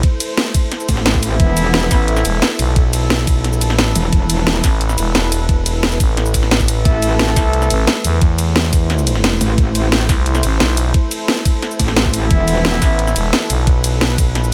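Aggressive and mechanical, this short cut of dark technical drum and bass pairs a knocking electronic kick and an up-front drum kit with a cracking snare, hi-hat, ride and shaker against a thick, growling FM bass, while a distorted, metallic wobble bass with sidechain pumping surges in bursts, mellow, distant brass stabs ring out through dub echo, and a deep, moody detuned pad with chorus and sidechain pumping sustains Am and Esus4 chords underneath, all in a lightly reverberant space.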